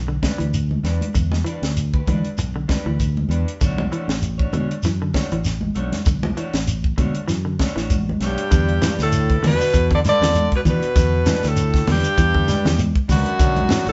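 An excerpt of defiant, funky afrobeat at 98 BPM in E dorian opens on fingered electric bass, soon joined by a tight, up-front funk kit with a high-tuned snare, thick-skinned congas, a grainy shekere, bright semi-hollow guitar arpeggios and twangy, slightly broken-up guitar stabs, before a clear, punchy alto saxophone melody enters at 8.3 seconds over a second line from a raspy baritone saxophone and a brilliant trombone with scooped notes, all in a live room with moderate reverb and a dark, band-limited top end.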